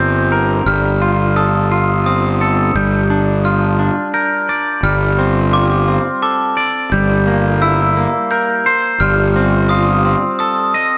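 Cinematic and brooding, this post-rock excerpt in 3/4 sets a twangy, up-front electric guitar's picked arpeggios against bell-like glockenspiel arpeggios from hard plastic mallets, both touched with slapback echo, over a growly, fuzz-overdriven fingered bass rooted on a low G until 10.1 seconds, all bathed in a lush hall reverb that gives a big arena sound as the chords move through Gm7, Dm7/G, C7/G and F7/G.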